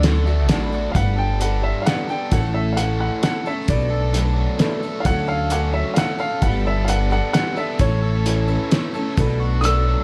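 A warm grand piano carries the melody through this nostalgic excerpt of folk rock and heartland rock in 3/4, taking a solo from 1.0 seconds after a brief fill from a dark, intimate upright piano whose action noise is audible beneath it. Shimmering, octave-doubled twelve-string acoustic guitar and a biting, double-tracked overdriven electric guitar riff fill out the accompaniment, while a woody pizzicato upright bass sits up front. The cloth-damped drum kit thuds with a fat snare, tight kick and hi-hat, sounding muffled, gritty and lo-fi with a rolled-off top. A reedy tonewheel organ with key click and fast rotary speaker adds faint sustained chords at the start and again from 6.4 seconds. The chords cycle through D, Gadd9, A and Bm7, with a Dmaj7 in the middle, all set in a small, dark-toned room.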